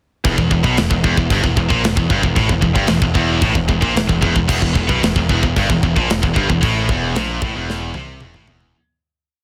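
Heavy metal with an epic, aggressive mood, built on a single riff over E minor that two bright, high-gain distorted guitars play as picked single-note lines, one up front and one set back in the mix. A punchy fuzz bass with overdrive doubles the guitar riff in driving eighth notes, while a tight, mid-forward acoustic drum kit sits up front with a metal drive groove of kick, snare, toms, crash and china cymbals. The sound is dry, dense and heavily limited, and the piece fades out from 6.6 seconds as a drum fill starting at 7.7 seconds carries it to the close.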